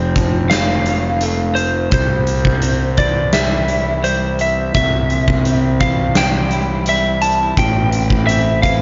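A big arena sound fills a moderate concert hall with a 2.4-second reverb tail, its top end capped at 7.5 kHz. This brooding, cathartic post-rock excerpt moves at 85 BPM in a straight 4/4, tuned to A4 = 438 Hz, and walks from F to C before settling on Am7 at 7.6 seconds. Up front, a fuzz-soaked fingered electric bass growls through overdrive in its low register, joined at 0.2 seconds by a huge acoustic arena drum kit with a punchy kick, a medium-tuned snare and hi-hat. In the background, an electric guitar through a small old amp picks slightly broken-up arpeggios, coloured by spring reverb and analog delay. Over it all, a lightly driven, compressed lead guitar picks a warm melody between C5 and A5, its notes trailed by slapback echo and analog delay.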